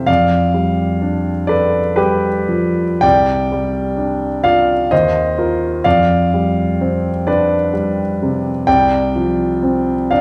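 A clear, intimate grand piano opens this dreamy, serene fragment of impressionist solo piano in F lydian, unfolding slowly with rubato in 3/4 at 63 BPM across a range from C2 to G5 with audible action noise and long sustain, drifting through a G9 over F, suspended C and E-flat harmonies and a resting F chord, up front in a wet recital-hall reverb of 1.8 seconds, cut from a longer piece at 10.2 seconds.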